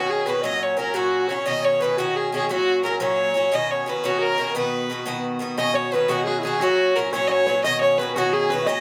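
A rich, focused fiddle leads this bright, rollicking Celtic jig in 6/8, carrying the melody up front with a light vibrato from a single bowed player. Beside it, a pure wooden flute plays a soft-edged second line with a straight tone, close-miked yet sitting in the background. An Irish bouzouki, picked on doubled strings with a metallic sparkle, drives the accompaniment from the front of the mix, moving between F# and Badd9 chords with a brief turn to B. At 5.6 s, as the opening section repeats, a very quiet open-back banjo joins with a mellow, twangy, plunky fingerpicked second line that adds a percussive edge. A moderate small-room reverb keeps the acoustic ensemble intimate in this short excerpt from a longer piece.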